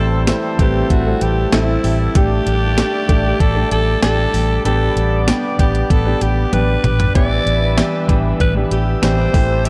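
A dark production with light reverb frames this moody, nostalgic stretch of 1980s-style pop at 96 BPM in straight 4/4, tuned to A4 = 439 Hz, with chords moving from Am7 through Dsus4/A and G/A to Em7/A. A raspy, gritty alto saxophone carries the melody with vibrato, scooped notes and digital delay over a clear concert grand piano, a smooth, detuned analog pad with chorus, a very quiet, bright guitar riff recorded direct, and background horn stabs with light vibrato and delay. Punchy, foam-muted fingered bass sits up front on A, and an overdriven 12-bit drum machine with a thumpy kick enters at 0.3 seconds, adding a fill from 6.5 to 7.2 seconds.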